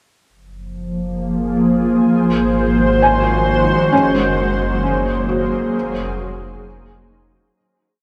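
Drenched in a huge, wet reverb with an eight-second tail, this short, complete ambient piece feels luminous and serene, moving at 66 BPM in 4/4 with a straight feel in Gb lydian. A shimmering, ethereal pad sits up front, its detuned sine tones wave-folded and granular, with an octave-up shimmer, chorus and its own reverb, swelling in slowly and holding mellow sustained chords that shift through Gbmaj9#11, Ab7, Gbadd9 and Fm7. Beneath it, a deep, round sub bass holds sustained root notes, fading in from 0.3 seconds while the whole piece fades out from 3.9 seconds. At 3.0 seconds a soft, felt-muted upright piano enters with intimate arpeggios through a tape echo, its three slow loops of unequal length drifting against one another. The result is a hushed, floating single section that dissolves into the reverb.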